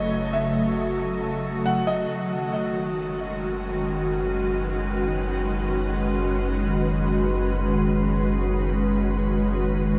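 Drenched in a dark, moderate shimmer reverb, this melancholic, serene ambient excerpt at 68 BPM in 3/4 sets a glassy, chorused FM pad holding sustained chords up front over a round sub bass that fades in. Very quiet muted synth keys trace arpeggios, and a felt-muted upright piano with audible action noise voices a brief melody through diffuse delay until 2.1 s. A bright, detuned bowed-like drone enters at 0.7 s in the background and gradually fades out across the excerpt, over chords moving from F#m7 to G#m7/F#.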